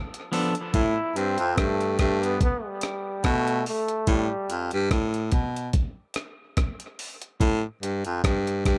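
Dub reggae at 72 BPM with a swung sixteenth feel, hypnotic and deep, in this short excerpt cut from a longer piece: a gritty, compressed, pitched-up sampler-style breakbeat kit of hi-hat, thumpy kick and rim click runs throughout, while a twangy, slightly broken-up electric guitar flickers for a moment at 0.3 seconds under dub echo. From 0.7 seconds a raspy baritone saxophone carries the bass line with vibrato and a smooth top. A brilliant, vintage-toned trombone with a soft attack and light vibrato sings the melody through dub echo until 4.5 seconds, over chords moving from Fmaj9 to Gadd9 and Fadd9 in a small, lightly reverberant room.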